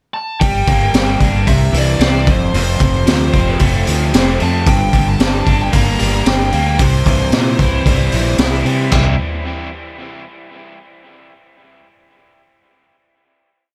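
Indie rock at 113 BPM in C mixolydian, wistful yet carefree, this short whole piece opens with a dark, distorted lead guitar picking a motif-based melody with tape echo from 0.1 s, joined at 0.4 s by a double-tracked, crunchy rhythm guitar playing picked arpeggios through tape echo over a Gm, C and F progression. A punchy fretless bass drives steady eighth notes beneath a raw garage kit with a high-tuned snare, boomy kick and gritty, rolled-off saturation that sits up front in a big rock groove. The small room ambience gives the echo-heavy mix its close, roomy character before it settles on a final chord from 8.9 s.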